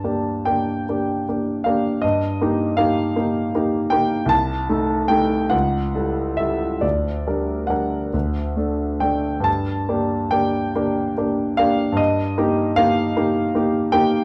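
A clear, worn concert grand piano plays alone through this yearning, melancholic romantic nocturne in G minor, sitting up front with a deep bass and ranging from C2 to A5. The 6/8 pulse moves slowly at 44-53 dotted-quarter beats per minute with free rubato, as the harmony passes from Gm through Eb/G, Adim/C, A7/C# and Gm/D to D, returns to Gm at 9.5 seconds and moves on to Eb/G at 12.0 seconds. A moderate large-studio reverb and a dark, warm production surround this brief excerpt from a longer piece.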